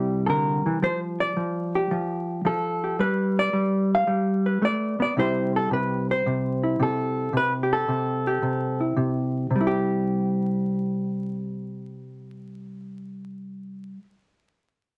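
Vinyl crackle and a moderate studio reverb frame this playful, swinging solo jazz fragment, cut from a longer piece, where a clean, dark, compressed hollow-body electric jazz guitar, fingered and sitting up front, moves through rich ninth chords before settling on a plain C chord across its 14.1 seconds.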